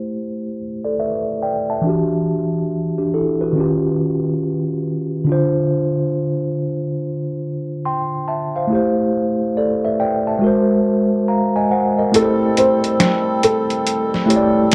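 Swung 16ths at a slow 70 BPM in 4/4 carry this nostalgic, hazy lo-fi hip hop excerpt in A minor, where a mellow, clean tine electric piano plays Am7, Em9 and D#9 chords up front through a filter sweep that runs until 12.1 seconds. At that point a gritty, pitched-down boom bap hi-hat and medium-tuned snare enter alongside a reedy, breathing harmonium, and at 12.2 seconds a soft, thick-felt upright piano with audible action noise adds a brief, intimate melody through analog delay. The whole sits in a dark small room with a short ambience.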